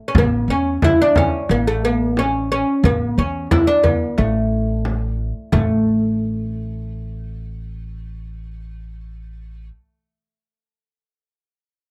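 A dry, close 1970s-style studio sound frames this passionate, festive Persian modal ensemble piece in A dastgah homayun at 89 BPM in a straight 4/4, where an up-front fretless oud, plectrum-plucked on double strings with a woody tone, carries the melody over a thumpy pizzicato upright bass on steel strings while a frame drum struck with hard hands in a live room drives the groove until 5.8 s, just after the music shifts into a new section at 5.5 s in this passage cut from a longer piece.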